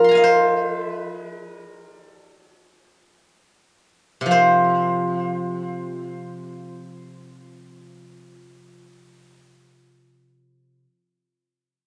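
Unbound by a fixed pulse, this short piece of Chinese traditional music moves in free time, easing to a slower pace over its first 4.3 seconds. A solo steel-string zither, played with fingerpicks, carries the whole recording from start to finish, spanning C3 to C6. Its tone is bright and silvery, with notes that ring out and sit up front in the sound. Tape echo trails the zither, and a wet spring reverb gives the studio space a lingering tail. A new passage begins at 4.3 seconds, and the recording, cut from a longer piece, has an elegant, longing mood throughout.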